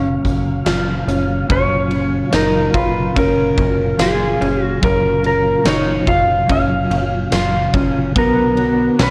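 This ethereal, blissful dream pop excerpt at 72 BPM in F# major opens on an F#maj7 chord, with an up-front lap steel guitar carrying the melody in slide volume swells through tape echo, over two dark, clean, fingered electric guitars (one an accompaniment, the other very quiet and compressed, playing chorused, echoing arpeggios), a soft, flute-like tonewheel organ holding sustained chords in the background through chorus vibrato and a fast rotary speaker, and a plucky, funky analog bass with a fast, decaying filter pluck. At 0.2 seconds a huge arena drum kit enters with a punchy kick, fat snare, hi-hat, ride cymbal and tambourine in a big room, before the harmony shifts to Bmadd9 at 8.2 seconds. A scoring stage reverb and worn, warbling cassette tape with pitch drift give the whole piece a hazy, aged glow.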